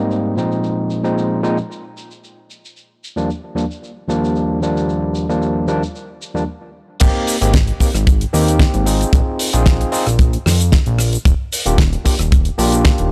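Nu-disco in Eb major at 113 BPM, sunny and feel-good, opening with a barky, overdriven tine electric piano through a combo amp, pumping with sidechain over Abmaj7, Bb7sus4 and Ebmaj9 chords, while a damped 70s drum kit adds a fat snare, rim clicks, shaker, hi-hat and crash, all softened by low-pass filtering and a touch of studio reverb. After a brief stop at 6.5 seconds, the drop lands at 7.0 seconds as a tight, airy, up-front kick and a thick, detuned sawtooth analog bass with tube saturation and a filter sweep join in. The recording is dry and gritty, cut from a longer piece.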